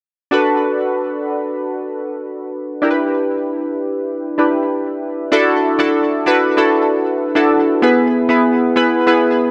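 Pop with a moody, nostalgic cast, this short cut from a longer piece features chorused retro synth keys alone from 0.3 to 9.5 seconds, a glossy, detuned pulse-and-sawtooth tone with pulse-width modulation, a filter sweep, fast attack and decaying notes, set bright and up front with digital delay. The harmony moves from Bm7 to Em7, then shifts at 5.3 seconds to Dadd9 before landing on E, all in a lightly reverberant digital ambience.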